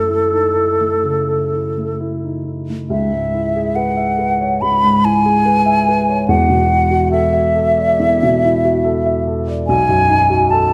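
Hazy and mysterious, this short fragment of an impressionist classical duo drifts in a rubato 4/4 at roughly 61-73 BPM, tuned to A4 = 441 Hz. A pure, hollow silver flute sings the melody up front with vibrato and tongued notes, while a dark, vintage-toned baby grand supplies a mellow accompaniment with long sustain, both heard throughout in a wet recital-hall reverb. The harmony moves from F#m7 through C#m7 at 2.9 seconds to E9sus4 and finally B7.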